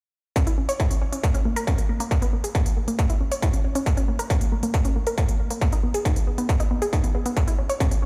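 A straight 4/4 pulse at 137 BPM drives this short uplifting trance excerpt in C# dorian, with an electronic kick drum sitting up front, distorted and overdriven, and crisp, layered electronic hi-hats carrying their own overdrive further back in the mix. Over this rhythm, a unison pluck plays arpeggios between A#3 and C#5, its detuned sawtooth tone lush and punchy, with a noise layer, ring modulation and a filter pluck shape whose fast attack gives way to decaying notes. Sidechain pumping and tape echo shape the pluck, while the kick and hats share a studio reverb. All three parts enter together at 0.4 s and run to around 8 seconds as one continuous section cut from a longer piece. The mix itself is fairly dry, though it sounds as if played on a big sound system in a bare room, picking up a stony ambience that adds to its emotional, euphoric lift.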